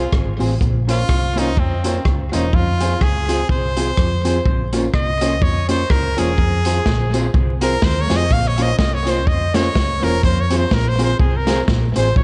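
Ska with a driving, energetic swing, cut from a longer piece, where a brilliant, forceful trumpet carries a solo melody with light vibrato and tape echo over alternating Fm and Bbmadd9 chords, backed by a mellow, dark electric guitar that also carries tape echo, woody upright piano stabs with audible action noise in the background, a round, punchy hollow-body bass, a crunchy, gritty breakbeat kit with a tight kick and rim clicks given tape echo, and a very quiet, jingly tambourine set distant in a large room, all under light reverb and vinyl crackle.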